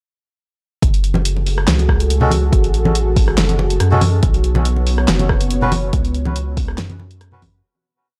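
A dry, gritty sound with the grain of cassette tape frames this brooding and meditative piece of deep dubstep in F# minor, moving at 141 BPM with a half-time feel and a light swing on the sixteenths. The drop lands at 0.8 seconds, where a deep electronic kick, a fat-snared deep house kit of handclaps, hi-hats, rim clicks and snare, and a round, soft sub bass, up front with tube saturation and playing chopped phrases, all arrive together. Low-tuned, damped congas struck with soft hands add thick-skinned, echoing hand drums just after. A dark, detuned analog pad with chorus holds slow-blooming sustained chords, moving from F#madd9 to Bsus2. From 2.2 seconds a reedy, nasal melodica drops sparse chord stabs soaked in dub echo, one shape shifted in parallel, before the whole piece fades out from 5.4 seconds.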